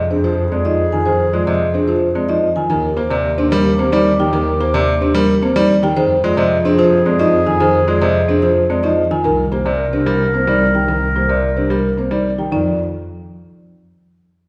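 A warm clarinet second line and a lush, bowed double bass section open this meditative, hypnotic minimalist classical pattern piece at 110 BPM in 3/4, joined at 0.1 seconds by a ringing, mellow vibraphone melody played with soft mallets, intimate grand piano accompaniment with audible action noise, and rustic, woody marimba arpeggios, while the harmony cycles through Fm7, Ebmaj7 and Cm7 in F dorian within a recital hall heard from further back, until the chords drop away at 12.5 seconds.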